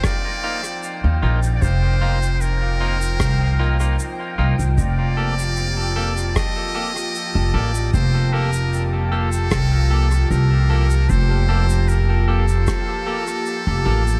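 A steady, straight 76 BPM pulse in 4/4 from a deep, tape-warm electronic kick, which drops out at 12.8 s, and a small-room rim click and shaker carries this peaceful, hazy ambient dub fragment, where a woody, thumpy pizzicato upright bass sits up front from 1.0 s, a buzzy, thin metal-muted trumpet with light vibrato sings the melody through dub echo, twangy clean electric guitar stabs punctuate the groove with their own dub echo, a soft, breathy chorused pad fades in with sustained chords moving from F7sus4 to Gmadd9/F, and a dark, wind-like tuned noise texture drifts in the background, all within a light studio reverb.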